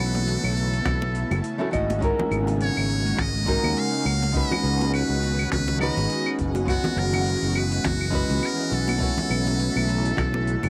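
Recorded at home on cassette in a wet booth with a short decay, this sunny, blissful sunset chillout cut swings its sixteenths gently under a buzzy, close-miked trumpet with a metal mute, whose forceful, vibrato-laden pop-style solo trails a tape echo. A fingerpicked nylon-string guitar with fresh strings and audible finger squeak, an airy, warbling pad of detuned sawtooth voices with ensemble chorus, and a growly, up-front fretless electric bass with lush chorus move through suspended ninth chords. Very quiet, ringing congas enter at 0.1 s, a layered deep house kit of metallic hats, claves, finger snaps and shaker adds overdriven grit from 0.2 s, and a deep, tape-warm analog kick joins at 0.9 s.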